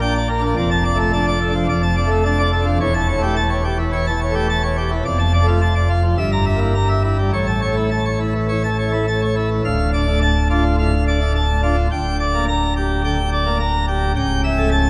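Classical organ toccata in D minor at 106 BPM in a straight 4/4, stormy and dramatic, tuned to A4 = 436 Hz and cut from a longer piece. A solo pipe organ on full plenum with mixtures sounds brilliant and up front, its baroque voicing and chiff spanning C#1 to Bb5, while a church reverb of 3.0 s surrounds it. The opening passage moves through Dm/F, A7/E and Edim/G to an A chord, and at 9.7 s a new passage begins on Dm, passing through Gm/D to A7/C# by 14.2 s.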